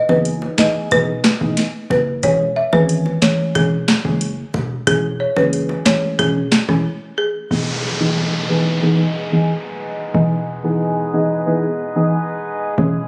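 Dancehall at 91 BPM in E major, summery and bouncy, opens with a woody, rustic marimba melody over deep, mellow chord stabs with chorus and phaser, a punchy 808-style bass, background bongos and a booming, overdriven analog drum machine with a deep kick and crisp snare, then after a break at 6.8 seconds a reedy, breathing harmonium with sidechain pumping and an electronic downlifter join the continuing chord stabs and bass beneath a filter sweep from 7.5 seconds, all caught with light reverb and studio ambience as a phone recording in the room.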